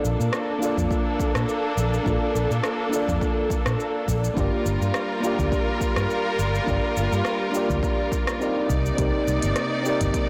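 Sunset chillout with a sunny, blissful mood and a gentle sixteenth-note swing, this fragment is cut from a longer piece and moves through Bbmaj7, Gm7 and Cm9 chords. A mellow FM electric piano carries the accompaniment with a soft, dark, decaying tone, a noise layer, chorus and digital delay, while a clear studio string section holds lush, bowed chords with vibrato, sitting close and up front. Underneath, a round, amped fretless electric bass adds ensemble chorus and transformer saturation. A deep house drum kit of cabasa, smooth hi-hat and rim click plays from the start, with soft clipping on the snare, and a punchy, layered electronic kick drum joins at 0.8 s. The drums carry a small-room character, and a moderate concert hall reverb surrounds the mix, though the recording is blown-out and overdriven overall.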